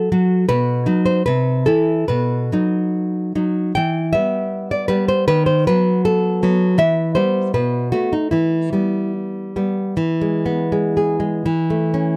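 In a flexible 2/4 pulse that stretches and relaxes with rubato, this melancholic, intimate romantic piece for solo classical guitar unfolds at an unhurried pace. The nylon-string guitar carries everything alone from 0.0 to 12.2 seconds, fingerpicked with a bright tone, and finger squeak adds a human touch. Its range runs from B2 up to G5, and the harmony circles through E minor chords such as C, B7 and Em before turning to a brighter E chord at 10.0 seconds, where a new section begins. The instrument sits up front in a dry, close recording with a small-room ambience and a 1970s studio character. The passage is cut from a longer piece, ending on an A/E chord.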